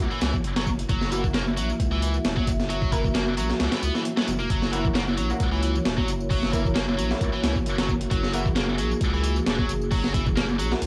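A dark analog pad, an orchestra-hit-like synth stab and a saturated sub bass all sound from the very start of this energetic, raw breakbeat excerpt, joined within a fraction of a second by a heavy high-gain guitar riff and a tambourine at 0.1 seconds, then a sampler-style breakbeat drum kit at 0.2 seconds. Set at 133 BPM in 4/4 with a light swing on the sixteenths, the groove rests on an overdriven, compressed kit with a thumpy kick and a medium-tuned snare, placed up front with a gritty, small-room character, while the layered electronic tambourine sits in the background. The deep, thick sub bass carries tube saturation, and the double-tracked, picked guitar riff is bright and distorted, colored by analog delay. Over an F#7 chord, the moody sawtooth pad holds sustained chords with chorus and sidechain pumping, and the bold, nasal stabs snap out with a noise layer, their own reverb and analog delay. 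Cassette tape coloring runs through the pad, stabs, guitar, tambourine and drums, giving the light-reverb home recording a lo-fi grit that runs to the end at 10.9 seconds.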